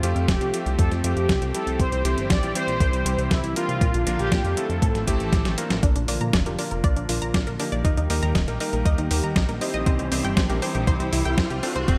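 Light reverb and digital ambience frame this melodramatic, danceable italo disco excerpt. A bold, warbling analog synth brass carries the melody over a lush, detuned unison pad, clangy electric grand piano stabs and a glossy, nasal chorused synth bass, all driven by a thumpy overdriven kick and an overdriven sampler-style drum machine playing hi-hat and snare. The brass stops at 5.3 s as a drum fill leads into a new passage at 5.8 s, where filter sweeps move through the piano and pad, a round analog pluck plays arpeggios, and a background riser enters at 8.8 s.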